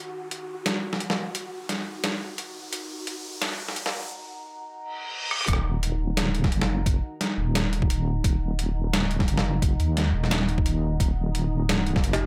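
A dark, moody pad of detuned sawtooth chords in Eb minor opens this tense, spacious half-time drum and bass passage at 174 BPM, joined by a mellow, tempo-synced pulsing texture and a gritty, compressed sampler-style kit of hi-hat, rim click and snare. An electronic riser and reverse cymbal build over a filter sweep, and a drum fill leads into the drop at 5.5 seconds. There the deep, up-front wobble bass and a knocking, overdriven electronic kick take over the low end.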